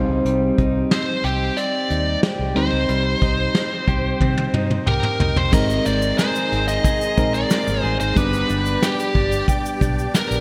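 Mellow, chorused electric-piano-like synth keys, a clean, compressed electric guitar riff and a round, foam-muted bass open this nostalgic yet urgent 1980s-style pop excerpt, joined almost at once by a dark brush drum kit with a punchy kick and gated reverb, then an overdriven, biting lead guitar melody up front from 0.9 seconds. After a drum fill, a grainy tube shaker enters at 5.5 seconds and a silky string machine with ensemble chorus slides in behind at 6.1 seconds as the harmony moves from Cm to Abadd9 and then G. The whole mix sits in a lush hall reverb with bright digital production.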